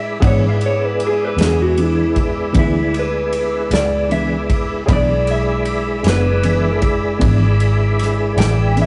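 A slightly broken-up electric guitar through a small old amp opens this rollicking, gritty slow blues in 12/8 at 52 BPM in E mixolydian, playing a lo-fi, compressed solo over an E7 chord with a smooth tonewheel organ's slow rotary speaker and chorus vibrato, a round foam-muted fingered bass and a very quiet, brilliant baby grand piano. At 0.2 s a mellow, clean fingered electric guitar with harmonic tremolo and a natural country drum kit join in, the kit giving a punchy kick, medium-tuned snare and dark ride cymbal. The rough rehearsal-room recording has a moderate small-room ambience and is cut from a longer piece.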